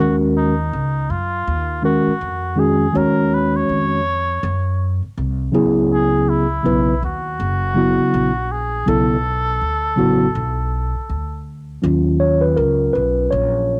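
Swung sixteenths at 81 BPM set a nocturnal, mellow hip hop groove in this fragment of a longer piece, with a woody, growly pizzicato upright bass beneath a clean, direct tine electric piano moving through Ebm9, Dbm7 and Bm9, while a veiled cup-muted trumpet with light vibrato and a soft attack carries a jazz-style melody until 11.5 s, before the electric piano takes a solo from 11.8 s, the keys and trumpet both coloured by cassette tape and plate reverb in a homespun cassette recording.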